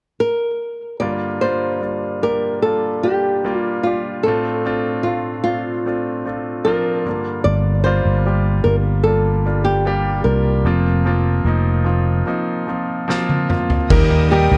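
A heartbroken, longing pop ballad in G minor at 74 BPM, this excerpt opens with an up-front, dark flamenco guitar carrying the melody, joined at 1.0 seconds by a clear, intimate concert grand piano with audible action noise and long sustain, moving through Gm7, Dm7 and Fsus4. A growly, amped fretless bass enters at 7.5 seconds, and during a break a roomy, distant indie drum kit with a fat snare and punchy kick plays a fill from 13.1 seconds. At 13.9 seconds the music lands on Eb as a lush bowed string section in the background and a very quiet, full-bodied fingerpicked steel-string guitar with finger squeak arrive, all within a small, dark-sounding room.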